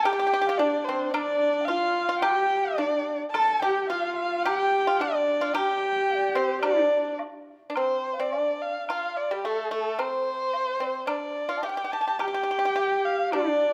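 Chinese traditional chamber music for a small ensemble unfolds in this tender, wistful passage cut from a longer piece, moving at 108 BPM in 2/4 with a rubato feel in D yu mode. A dark, woody erhu carries the melody up front, its bowed line shaded with vibrato, portamento and a soft attack. A breathy bamboo xiao sits distant and very quiet with a straight, tongued tone, while a clear horsehead fiddle adds a nasal, husky second line with light vibrato and portamento, dropping out at 7.2 seconds and returning at 12.2 seconds. A dry, percussive pipa played with fingerpicks and a woodblock with dark cymbals in the background round out the ensemble. The whole sits in a moderate recital hall reverb, shifting into a new section at 7.8 seconds.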